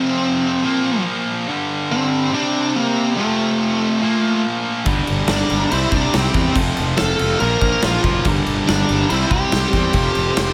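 A bright, up-front hard rock excerpt with light reverb and a menacing, aggressive drive opens on a warm, high-gain lead guitar with analog delay over a double-tracked overdriven riff guitar, then at 4.9 seconds a big-room drum kit with a punchy kick and bright cymbals, a growly fuzz fingered bass, a very quiet sludgy guitar playing its own riff and a soft, flute-like tonewheel organ on slow rotary join in, with a dark octave-fuzz lead guitar adding a background second line from 5.3 seconds over a Gm, C, F, Bb progression.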